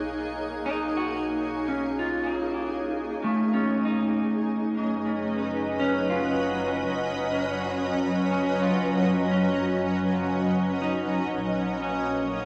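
Ambient music at 60 BPM in 4/4, peaceful and luminous, taken from a longer piece, with harmony moving from Cbmaj7 to Gbm6 at 3.3 seconds and on to Bbm at 11.3 seconds. A shimmering, ethereal pad sits up front throughout, its detuned unison and octave-up shimmer given a granular, bright sheen by chorus and built-in reverb as it holds long, slow-attack chords. Beneath it, an electric guitar at the edge of break-up plays dark, picked arpeggios through delay, while a clear, focused double bass section adds lush, bowed ensemble tone with vibrato, fading in from 3.3 seconds. A glassy texture of drifting overtones hovers calmly in the background for the first 3.3 seconds before falling away. The whole recording sits in a concert hall reverb with a 2.3-second decay and carries the worn, warbling pitch drift of old cassette tape.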